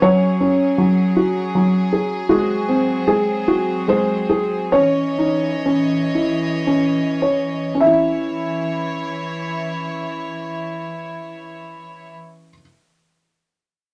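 In a gentle, straight 3/4 at a slow lullaby pace, this dreamy, wistful children's piece in C# minor eases into a noticeable slowing between 2.3 and 7.8 seconds. A felt-muted upright piano carries the melody up front, its thick felt giving a soft, dark, intimate tone with short sustain. Beneath it, a close chamber string section holds bowed chords at a lower level, clear and earthy with light vibrato and a slight bite. The harmony moves from F#sus2 through G#7 to C#madd9, settling on C#m as a contrasting passage begins at 7.8 seconds. A short club reverb adds a wet sheen, and the piano lingers until 12.6 seconds in this fragment cut from a longer piece.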